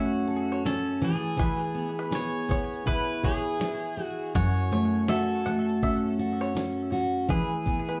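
An up-front, full-bodied jumbo acoustic guitar opens this easy-going, sunny acoustic pop excerpt, its picked accompaniment sitting alongside a quiet pedal steel guitar and a bright, twangy bluegrass banjo from the very start. The fingerpicked banjo spins percussive arpeggios high above, while the clean, compressed pedal steel plays a soft second line with slide and volume swells, both parts touched by tape echo. At 0.3 seconds a dusty, sampler-style soul drum kit enters, with a thumpy kick, a medium-tuned snare and shaker giving a gritty, relaxed swing. The harmony moves gently between F#m7 and E, with an unhurried, lazy lilt in the groove. A wet, small-room ambience places the band a little further back, lending the whole excerpt a homely, sun-warmed glow.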